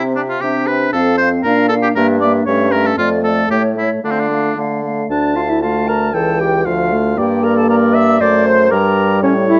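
A lively, spirited classical-period wind quintet movement in D minor at 117 BPM in a straight 2/4 opens with all five players together: a pure, vibrato-tinged silver flute carries the melody above a bright, up-front oboe on the second line, while a mellow clarinet and a warm French horn fill the accompaniment over a clear, up-front bassoon bass, all set in moderate studio reverb with a dark production, the harmony turning toward a new section at 5.1 seconds before this fragment of a longer piece ends at 9.6 seconds.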